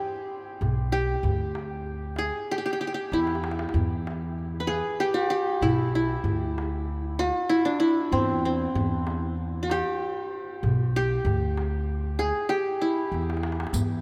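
A vast, echoing cathedral reverb surrounds this passionate, stately Arabic maqam ensemble excerpt in a steady 4/4. The mellow, bright-edged qanun carries the melody up front, its triple strings plucked with fingerpicks, while a woody pizzicato upright bass on steel strings holds the low end and a large, deep clay darbuka played with soft hands runs throughout, adding fills at 3.1 and 13.1 seconds. A bright-jingled, close, dry riq appears only briefly at 13.7 seconds.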